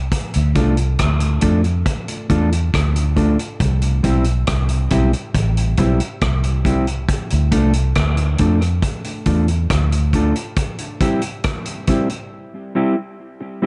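A slow, straight 4/4 pulse at 69 BPM anchors this deep, heavy dub reggae excerpt in D dorian, cut from a longer piece and tuned slightly sharp to A4 = 441 Hz. A vintage drum kit sits up front with hi-hat, a punchy kick and rim click, its tone mid-forward with a rolled-off top, playing from 0.1 to 12.3 seconds. The vintage muted fingered electric bass carries the low end between A1 and F2, a dark, round, foam-muted sound that is amped and punchy, stopping at 10.3 seconds. A mellow electric guitar supplies clean, fingered accompaniment from G3 to A4, high-pass filtered and trailed by tape echo, and it rings on through the break that starts at 10.6 seconds, outlasting the drums to close at 13.7 seconds. The harmony sways between Dm and C inside a small room with light reverb, and nothing in the sound reaches above 11.0 kHz.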